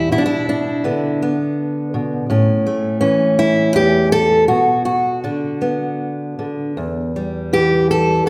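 A lush recital-hall reverb with a 1.7-second tail surrounds this brief, melancholic and haunting folk fragment, cut from a longer piece, in which a solo fingerpicked steel-string acoustic guitar, sitting up front with audible finger squeak, moves freely in a rubato 3/4 through Bm, A, Bm and Em across its 8.3 seconds.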